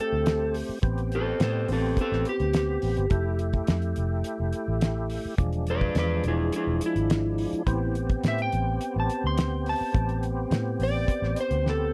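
An electric slide guitar carries the melody up front, its slightly broken-up tone ranging from C4 to C6 in this short excerpt of straight-eighth soul blues in A minor at 105 BPM. Beneath it, an overdriven tonewheel organ supplies gritty, full accompaniment with percussive second-harmonic attacks, chorus vibrato and a slow rotary speaker, sitting a little lower in the mix. A vintage muted fingered electric bass enters at 0.1 seconds with a round, foam-muted, dark sound. A damped 1970s drum kit joins at 0.3 seconds on hi-hat, kick and snare, with a fat snare, a tight kick and a rolled-off top. The harmony moves from Am9 through Fmaj7 and E7b9 back to Am9, and a drum fill arrives at 11.7 seconds. The mood is smoky and soulful, captured in a dry, close 1970s-style studio recording with little reverb.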